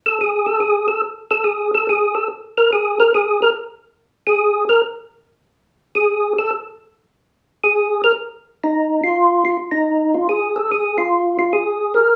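Swung eighth notes in 4/4 drive this short jazz fragment, cut from a longer piece, with a soulful, bluesy mood at a lively pace. A single percussive tonewheel organ carries it alone from 0.1 to 12.2 seconds, its line staying between Eb4 and Bb4. The tone is fat and clean, with third-harmonic percussion and audible key click giving each note a crisp attack. A slow rotary speaker and chorus vibrato add gentle movement to the sound. The organ sits up front in a rough home-demo mix, wrapped in wet studio reverb and a small room's ambience, and a new section begins at 9.0 seconds.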